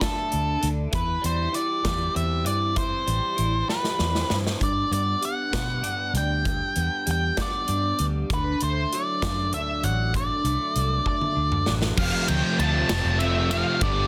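Densely mastered with light small-room reverb, this bittersweet, restless quiet-loud alternative rock fragment in 6/8 sets a dark octave-fuzz lead guitar melody up front over lo-fi, phaser-tinged arpeggios from an electric guitar through a small old amp, a big rock drum kit with a punchy kick, bright cymbals, a soft-clipped snare and fills at 3.7 and 11.1 seconds, and a foam-muted fingered electric bass, until at 12.0 seconds the arpeggios stop and three background riff guitars (crunchy overdriven, compressed distorted, and double-tracked thick fuzz) join on an F chord.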